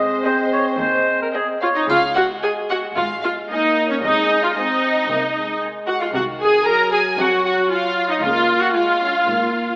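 This is a playful, whimsical cinematic film cue in Db major, moving at 114 BPM in a straight 4/4 with a mischievous air, and it is cut from a longer piece. It opens with a brief burst of woodwinds: a pure, crisp silver flute sits in the background, a warm cor anglais with light vibrato stands up front, and a dark bassoon supplies accompaniment, all three dropping out by about 1.9 seconds. A mellow, soft-attacked French horn section holds sustained chords throughout. Beneath it, a bowed string section carries the cue, with a distant violin section on the melody in the background, a close, focused violin section on a second line above it, a clear, lush viola section up front, and cellos and double basses adding expressive portamento in the bass. A small-room triangle adds a bright sparkle from 1.9 to 2.9 seconds. The whole sits in a wet scoring stage reverb, yet the mix carries an AM radio coloring.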